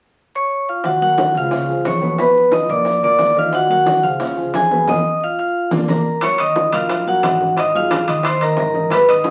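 Driving and passionate, this salsa excerpt races along at 178 BPM in Eb minor, cut from a longer piece and heard through the crackle of a very old 78 rpm record. A bright, metallic vibraphone played with hard mallets, motor off, carries the melody up front from 0.4 seconds, ringing clearly over the band. Woody, thumpy pizzicato upright bass on gut strings and a dark, boxy concert grand piano with deep bass and long sustain fill out the harmony, moving through chords such as Ebm7, Db, Bmaj7#11 and Bb. Ringing, low-tuned congas played with soft hands sit alongside round bongos in the background and distant, grainy maracas heard as if from a large room, all with a compressed, saturated edge on the drums. A drum fill and band accent from 4.9 seconds lead into a new section at 6.2 seconds, where metal-shell timbales join, the maracas having dropped out, and the harmony settles on Ebm7 and Ab9 under a wet studio reverb.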